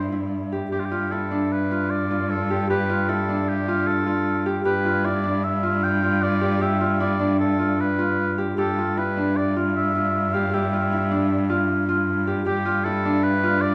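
Contemporary chamber music in an uneven 5/4 at 154 BPM, this playful, shimmering excerpt in G mixolydian sets a warm, softly attacked classical oboe melody with light vibrato over bright, ringing thumb-plucked Celtic harp arpeggios and a rich, focused bowed cello holding a G bass with vibrato, all sounding together for the full 13.7 seconds, opening on a G7sus2, in a moderate recital-hall reverb.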